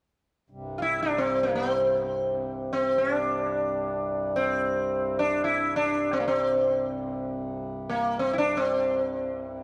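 Hindustani classical music in free time and C major, tuned to A4 = 441 Hz, with a devotional, radiant mood: a reedy, breathing pedal harmonium drone sits low and soft beneath an up-front sitar melody, plectrum-plucked and buzzing with shimmering sympathetic strings and a round tone touched by tape echo, entering at 0.8 s, all set in a moderate recital hall reverb with a dark, warm production in this fragment cut from a longer piece.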